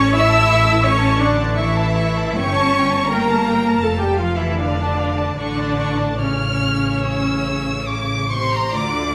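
Solemn and yearning, this brief cut from a longer classical piece is a slow romantic movement for chamber string orchestra in 4/4, moving with rubato between 65 and 87 BPM. One violin section carries the expressive, close-sounding melody high in its register, while a second violin section plays a smooth, even line beneath it, and the violas fill in the accompaniment with a focused tone. Clear-toned cellos and a rich, up-front double bass section share the bass, and all five bowed sections sing with vibrato from start to finish across the 9.1 seconds. The harmony opens on A, passes through A7 over G and D minor over F, and returns to A at 5.4 seconds. A moderate scoring-stage reverb gives the strings a gentle sense of space.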